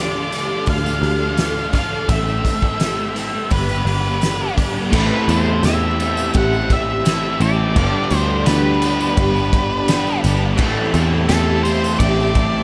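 Blissful and dreamy, this short cut from a longer shoegaze and dream pop rock piece moves at 85 BPM in a straight 4/4, drifting through Dm7, Am7 and Gmaj7 before settling between Am7 and Gadd9. A dark, fuzz-drenched octave-fuzz lead guitar carries the melody through distortion and digital delay, set over two crunchy overdriven rhythm guitars in the background, one bright and lush with chorus, the other warm and colored by reverse reverb. A shimmering, octave-doubled twelve-string acoustic guitar picks arpeggios through ensemble chorus and delay, while a very quiet vintage string machine voicing violas holds slow-attack sawtooth chords beneath it. A round, foam-muted electric bass anchors the low end alongside a loose indie drum kit with a punchy kick, fat snare and dark cymbals in a pumping room, plus a jingly, distant tambourine. At 4.9 seconds a third bright, double-tracked overdriven guitar joins the riffing, thickening the haze under light reverb and a small room ambience.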